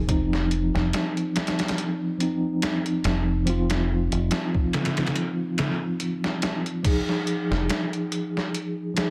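A mellow tine electric piano and a deep dub fingered electric bass open this short, hypnotic trip hop excerpt in F minor, with a sampler-style drum kit arriving at 0.1 s on crash cymbal, hi-hat, thumpy kick and medium-tuned snare. The tempo sits at 71 BPM in 4/4 with a light swing on the sixteenths, and the mood is dark. The clean electric piano carries the accompaniment through a tremolo and tape echo, a filter sweep shaping it over the opening chord of Cm/F before the harmony moves to Fm7 at 6.8 s. The bass holds a low F, round and amped, until it stops at 7.7 s. The drums sound pitched down and muffled, overdriven and re-recorded in a small room, and all three parts sit up front in a heavily compressed, radio-like sound with light reverb.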